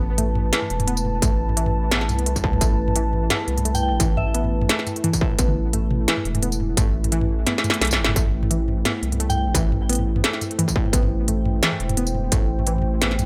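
Tense and heavy, this excerpt of half-time drum and bass at 173 BPM in A minor rides a thick, saturated sub bass and a moody, detuned analog pad pumping under sidechain, while a warbling, lo-fi pluck spins chorused arpeggios through dub echo, an industrial kit with clanging snare and crisp hats sits up front beside a distorted electronic kick that drops out for a drum fill from 7.5 to 8.2 seconds, and a pure FM bell briefly sounds at 3.7 seconds, all in light digital ambience.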